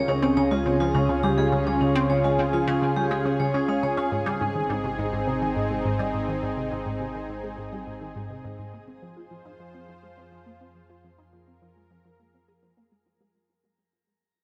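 Expansive and luminous, this ambient passage at 104 BPM in 4/4 rests on a lush, thick, detuned sawtooth pad that sits up front, and a warbling, wave-folded analog drone in the bass, as the chords move from Db to Ab at 4.1 seconds and to Fm at 8.7 seconds. A juicy, squelchy blip pluck with phaser, tape echo and shimmer reverb plays a riff throughout, while a bright, metallic vibraphone with slow motor vibrato adds ringing arpeggios only until 4.1 seconds. A filter sweep and a fade-out run the whole way through this excerpt from a longer piece, set in a wet plate reverb.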